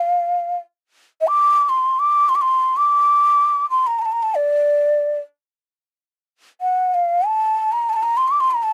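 A light reverb surrounds a solo ney placed up front in this brief fragment of Arabic maqam music, played in free time in D maqam saba with A tuned to 439 Hz. The end-blown reed cane has a breathy, hollow, mellow tone, moving between D5 and D6 with vibrato and tongued notes. The mood is stately, and the same opening idea returns at 6.1 seconds before the fragment ends at 8.7 seconds.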